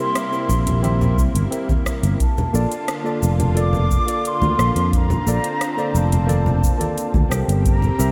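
Warm and blissful, this sunset chillout excerpt drifts at 88 BPM in Bb lydian, moving from C7 to Bbmaj7 and back to C7 at 7.3 seconds under a dreamy plate reverb. A mellow, airy wooden flute carries the melody with vibrato and tape echo, floating distantly over a lush, detuned sawtooth pad with chorus and a worn, slightly out-of-tune tine electric piano trailing a diffuse ambient delay. Entering at 0.5 seconds, a growly, punchy fretless bass sits up front beside a deep, dry electronic kick, while a smooth R&B kit of metallic hats, rim click and shaker mingles with bright, low-tuned congas in the background.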